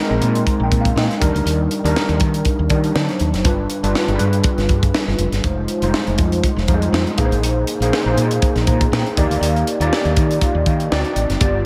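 Breezy and urban, this polished 1980s jazz-funk pop passage rides a lightly swung sixteenth-note feel in 4/4, cut from a longer piece. An overdriven tine electric piano carries the accompaniment up front, its gritty, combo-amp tone thickened by analog chorus, and it opens with a fill over the first 1.5 seconds before returning with another near 8.4 seconds. Beneath it, a woody fretless electric bass lays down a dark, round, hollow-bodied low end. A tight funk drum kit of hi-hat, kick and high-tuned snare sits mid-forward in a small room, wrapped in gated reverb. The harmony moves through lush extended chords such as Bb9sus4, Ebmaj7, D7b9, G7 and Fm7, all set in a light studio ambience.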